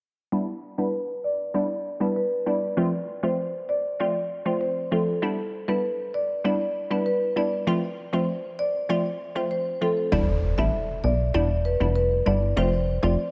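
A straight 4/4 dancehall pulse at 98 BPM sets a sultry, bouncy mood in E phrygian, with chords moving between Em7 and F. A crystalline, detuned wavetable pluck carries a filter sweep and chorus beneath a close-miked, dry marimba melody touched with tape echo. At 10.1 seconds a punchy, funky analog bass and an electronic impact arrive, all set in light digital ambience in this fragment of a longer piece.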